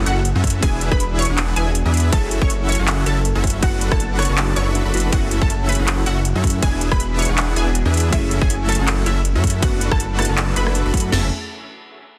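This future bass clip opens straight in the drop, with a huge, thick supersaw riff, a lush detuned saw bass sitting up front, and glassy digital keys tucked into the background, all pumping together under sidechain compression. The keys add bright chorus and phaser shimmer, a gritty 12-bit sampler edge and dub echo. The supersaw carries a vibrato-tinged, heavily compressed sheen, and the bass is rounded out with chorus and a mellow sine body. A punchy unison pluck melody arrives at 0.1 seconds, sitting high over the riff with ensemble chorus and tape echo. The overdriven trap kit, re-recorded in a small room, brings metallic hats, handclaps, ride and rim clicks, followed at 0.4 seconds by a hard-clipped kick, sharp snare, crashes and toms in a half-time, lightly swung groove. Looping through F#m7, E7 and D6/F#, the bittersweet, emotional passage sits in digital ambience under a dense, heavily limited modern master, shifting into a brief new section at 11.1 seconds.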